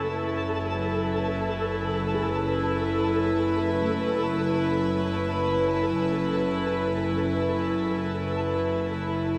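A bowed symphonic string section leads this brief clip from a longer ambient piece, holding soft-attack, sul tasto chords on a single F#m9 harmony at a slow 54 BPM in F# minor. The strings sit close and up front with a pure, floating tone that sets a serene, spacious mood. Beneath them, a bowed double bass section sustains a low F#1, its sound clear, smooth and lush with gentle vibrato. A very quiet handpan, struck with the fingertips, traces arpeggios in a dark, ringing, meditative voice, while a granular texture adds twinkling, sparkling sustained tones with an octave-up shimmer, a mellow FM colour and its own long reverb tail. All four parts play throughout the 9.4 seconds, bathed in a vast cathedral reverb of 5.7 seconds that lets every sound echo and hang in the air.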